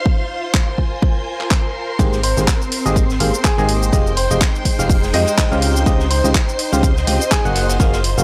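A dry, gritty hardware sound with small room ambience frames this joyful, euphoric piano house excerpt at 124 BPM in 4/4 with a 16th-note swing, built over chords like Fmadd11, Abmaj9 and Dbmaj9#11. Shimmering vintage string-machine violins with ensemble chorus and a distant, bowed studio string section with vibrato and portamento open together, pumping against a punchy, tape-toned electronic kick up front and a layered house kit of handclaps, hi-hat and shaker. From 2.0 seconds a biting, percussive FM electric piano riff with chorus and tremolo, a round, dark FM bass and a very quiet compact cocktail kit of hi-hat, ride and high-tuned snare join, and at 2.2 seconds a brilliant, worn concert grand carries the melody through analog delay.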